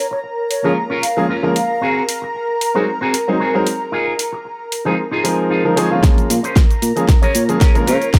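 Cosmic and sleek, this nu-disco excerpt in Bb minor moves at 114 BPM with a light swing, as a breathy flute with digital delay floats brief melodic phrases over a lush, warbling unison pad that pumps with the sidechain, while a dark envelope-filtered electric guitar picks a chorused riff and a brilliant, up-front grand piano lays down accompaniment through tape echo. A pop drum kit with a fat snare, bright hats and shaker enters at 0.5 seconds, and the harmony cycles through Bbm7, Ab7 and Fm7 before a clean electric guitar fill sets up the next section. At 6.0 seconds a punchy electronic kick and a round, fingered electric bass arrive as a drum fill and build-up push forward under light reverb.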